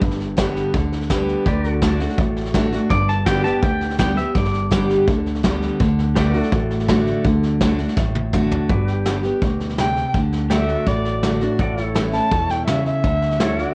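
Heartfelt and down-home, this honky-tonk country passage, cut from a longer piece, rides a full-bodied picked dreadnought guitar up front, a woody, thumpy pizzicato upright bass and a distant, roomy brushed kit with a punchy kick. Bright, twangy pedal steel with fingerpicked volume swells and slide holds sustained chords and takes a solo through the opening 8.7 seconds, while a second steel line adds a brief phrase and a drum fill leads into the next section. At 9.8 seconds a dark, close erhu takes the melody with vibrato and portamento, and cassette-tape grit, light reverb and small-room ambience lend a homemade feel.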